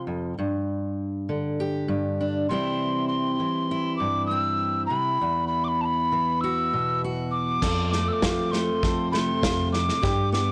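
A bright, full-bodied fingerpicked steel-string acoustic guitar opens this bittersweet, yearning indie folk fragment at 99 BPM, and an airy, hollow tin whistle carries the melody from 2.5 seconds over chords moving from C to Esus2. At 7.6 seconds the arrangement builds as the harmony shifts to F: a round fingered electric bass, a woody upright piano playing arpeggios in the background, and a loose, small-room drum kit enter with a drum fill, punchy kick, dark cymbals and softly clipped snare. The whole recording sits in light studio reverb with a blown-out, overdriven character.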